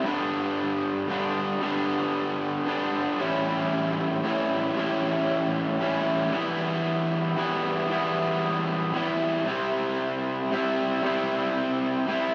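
Cinematic and hopeful, this short rock passage rests entirely on a single raw garage guitar playing alone from 0.0 to 12.3 seconds. The electric guitar is bright and picked, pushed through overdrive and double-tracked so it sits up front with a thickened edge. Moving in a three-beat metre with a straight feel, it works through a progression of G, A5, E minor and C, arriving on the final chord at 9.5 seconds. The sound carries a live, band-in-one-room character, wrapped in a wet studio reverb that gives the guitar space around it. Cut from a longer piece, the passage feels like an opening statement poised to lead somewhere larger.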